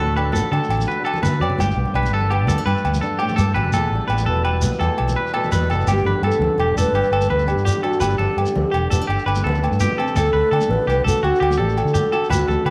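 This joyful, danceable highlife guitar band piece moves at 112 BPM in a straight 12/8 feel in G major, and it is cut from a longer piece. A boxy, fingerpicked flamenco guitar carries the accompaniment, its finger squeaks audible, while a bright, clean semi-hollow electric guitar picks high arpeggios through a tape echo. Beneath them a dark, round fingered electric bass anchors the harmony as it moves from D to G to Em. Ringing agogo bells sit close, a grainy shekere adds texture, and high-tuned congas played with soft hands ring in the distant background. At 5.9 seconds the mellow wooden-headed alto flute enters with a pure, soft-attacked melody touched with vibrato, over G and then D at 10.2 seconds. An echo chamber and small room reverb give the whole a gentle sense of space.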